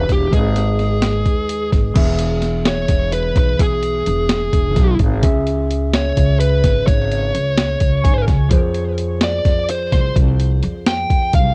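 Progressive instrumental band music in 7/8 at 256 BPM counted in eighths, intricate and brooding, cut from a longer piece and carrying the light reverb of a home cassette recording. A fuzz-distorted, dark lead guitar carries the melody through plate reverb and tape echo over bell-like, clean tine electric piano chords, woody gut-string upright bass played pizzicato, and a gritty, pitched-down boom bap sampler-style kit with a thumpy kick and high-tuned snare sitting up front. The harmony moves through G#m, E, C#m and Fm, with a new section arriving at 2.0 s and a brief electric piano fill at 7.8 s.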